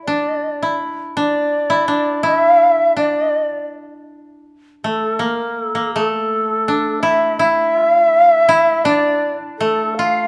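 Austere and solitary, this short cut of rubato Japanese traditional chamber music at 82 BPM in 2/4 sets an airy, reedy end-blown bamboo shakuhachi up front carrying the melody with vibrato and a soft attack, over a dry, woody koto plucked with fingerpicks as a lower second line, both playing throughout in light reverb with a new section arriving at 4.5 seconds.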